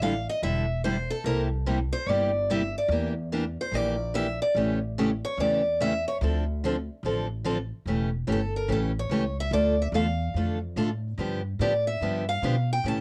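This is acoustic string swing in the jazz manouche style, bittersweet yet fiery, with a lilting swung feel in 4/4. A picked steel-string guitar with a bright, boxy parlour tone carries the melody up front, and audible finger squeaks and a cassette-tape colouring give it a homespun character. It takes a solo from the start until 7.9 seconds, over harmony moving from A7sus4 through C9, Em7b5 and A7 to Dm7. A second picked steel-string guitar with a warm concert-instrument tone supplies accompaniment beneath it, while a pizzicato upright bass adds a woody, growly low end that sits up front alongside the guitars. Light reverb and the intimate feel of a home cassette recording frame this short passage, cut from a longer piece, which closes at 13.0 seconds on a run of A7, Dm and G7.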